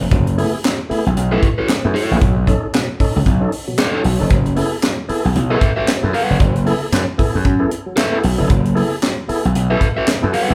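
Recorded as a band playing live in one room with moderate large-studio reverb, this hypnotic, funky cut in F# dorian grooves at 114 BPM with a swung 16th-note feel, as a gritty, overdriven slap bass and a tight funk kit with high-tuned snare, handclaps and hi-hat drive from the start, a clear tonewheel organ stabs through a fast rotary speaker, and a crunchy, picked electric guitar joins the accompaniment at 1.3 s over chords moving from F#m11 to B9 and back.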